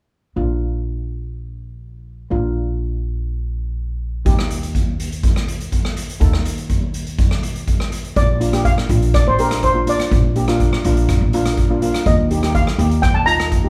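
A close-miked, dry and full steel pan melody arrives at 8.2 seconds over a shimmering, airy steel pan accompaniment and a woody, thumpy pizzicato upright bass that play from the start, while a polished street-band drum kit with a boomy kick, hi-hat and rim clicks joins at 4.3 seconds, giving this festive, bouncy calypso excerpt the feel of a band playing live together in a large studio room with moderate reverb.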